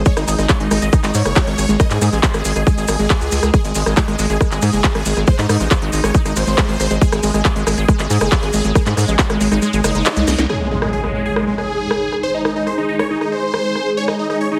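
Hypnotic and driving, this excerpt of psychedelic trance runs at 138 BPM in 4/4 with a straight feel in G# major, opening straight into a drop. An overdriven, tight electronic kick sits up front with a techno kit of cracking snare, handclaps, rim clicks and smooth, tape-warm hi-hats, while grainy maracas rustle in the background and a round, deep analog bass holds the low end. A huge, airy supersaw carries the melody, thick with detuned unison, phaser and digital delay, as a punchy detuned unison pluck riff, colored by cassette tape and tape echo, sits behind it, and a swarming, warbling drone sustains chords in the background; all three pump with the sidechain. The kick drops out at 9.6 seconds, a drum fill lands at 10.3 seconds, and at 10.5 seconds an electronic impact opens a new section as the bass, pluck and maracas stop. A blurred, cloudy granular pad then drifts in at 11.5 seconds alongside the supersaw and drone. 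The mix is heavily compressed with a radio-like sheen and a moderate digital room reverb.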